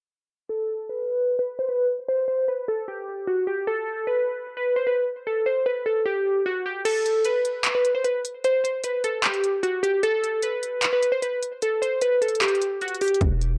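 Glassy digital keys open this dark, melancholic half-time trap excerpt at 151 BPM with a chorused, filter-swept melody, joined at 6.9 seconds by a crisp, up-front electronic drum kit of hi-hats, handclaps and crash while the kick stays muted until a hard-clipped hit lands alongside a heavy, distorted 808-style bass on E1 at 13.2 seconds, all in a dry, gritty recording with tape and transformer saturation.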